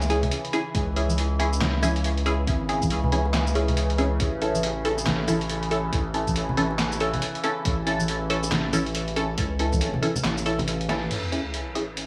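A muted, full-bodied sawtooth chord stab with a detuned filter pluck punctuates this meditative, heavy deep dubstep excerpt, its short, mellow hits colored by phaser and trailing dub echo. The piece sits in C# minor at 139 BPM in 4/4 with a half-time feel and a 61% swing on the sixteenths, moving from C# minor to A at 4.2 seconds. Beneath it, a thick, saturated sine sub bass holds sustained low notes, while a resonant drone of sawtooth and sine tones sustains chords with moving overtones, softened by chorus, phaser and its own reverb. The drums pair a layered electronic kick with a compressed, pitched-down, sampler-style trip hop kit whose muffled snare, hi-hat, shaker, handclaps and crash carry overdrive, and bright, close congas and bongos sit in the background. A drum fill and band accent arrive at 10.9 seconds, giving way at 11.1 seconds to an electronic sub drop as the chords return to C# minor. 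Vinyl crackle and a small-room ambience with light reverb frame the whole.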